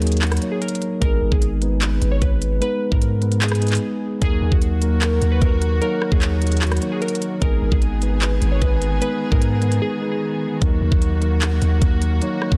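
A half-time trap groove at 150 BPM anchors this eerie, menacing hip hop excerpt in Eb minor: an up-front electronic kit of knocking kick, crisp hi-hats, handclaps and rim clicks carries vintage 12-bit sampler grit, while a deep, long 808-style sine bass hits fast and decays under the Ebm and Abm changes. Glassy, detuned digital keys carry the melody through chorus, delay and a low-pass filter sweep until 10.6 s, over a mellow, clean tine electric piano accompaniment, and a dark, woody bowed string section with light vibrato and a soft attack enters at 4.2 s with sustained chords. Brief breaks punctuate the passage, and the sound sits in light reverb within a dense, heavily limited modern master.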